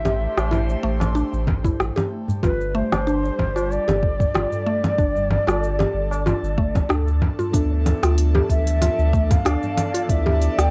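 Earthy and hypnotic, this organic downtempo cut with a lightly swung 16th feel sets a breathy, bamboo-toned bansuri melody with vibrato, cassette tape and analog delay over an airy, detuned pad that pumps under chorus and phaser, a woody, mallet-like synth pluck tracing arpeggios, and a deep, round sub bass sitting up front. Crisp hats, cabasa, congas and rim clicks from an organic electronic kit drive the groove alongside low-tuned, ringing tabla in the background and a soft electronic kick from 1.5 seconds, while a barely audible quartz singing bowl rings until 7.6 seconds. At 7.5 seconds the chords move from Am7 and Gsus2 to Dm69 as muted, felt-like synth keys enter, all within an intimate small-room home cassette recording.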